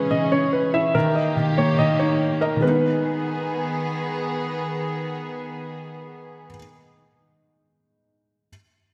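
A baby grand piano melody, a felt-muted upright piano and a dark, nasal chamber string section begin together in this tense, half-time hip hop fragment at 143 BPM in G# harmonic minor; the baby grand's long-sustaining line ends at 3.8 seconds, the bowed, reedy strings hold their chords until 6.5 seconds, and the boxy, intimate upright, with its audible action noise, plays on to 8.5 seconds, set in lush hall reverb with a bright 1980s-style digital sheen.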